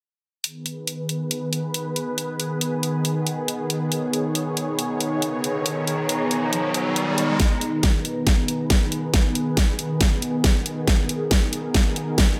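A lush, detuned supersaw pad anchors this chaotic, menacing heavy wobble dubstep in G# minor at 138 BPM, with a swung, half-time feel. The pad holds sustained chords up front through a phaser, sidechain pumping and a filter sweep, beside a dubstep kit with a huge snare and hi-hat in a small room. A deep, dark ambient pad with a sub octave fades in behind with chorus and reverb, and an electronic riser from 5.0 s leads to 7.4 s, where a knocking electronic kick enters up front and a drum fill drives the build-up.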